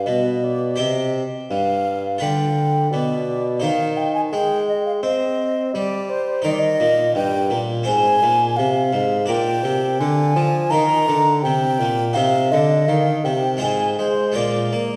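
This baroque-style classical sonata movement with continuo, cut from a longer piece, moves in a flowing yet grave 4/4 with a straight, unhurried pulse. A baroque flute carries the melody up front, its airy, woody tone shaped by vibrato, a soft attack and expressive phrasing before it falls away at 14.8 seconds. A plucked, brilliant harpsichord in the French style fills out the harmony with the ringing of its octave strings. Beneath it, a mellow bassoon plays the bass line with a punchy yet smooth-topped sound and light vibrato. The trio sits in a wet recital hall, heard from further back in the room, with the reverb lending a spacious, lingering tail to the performance.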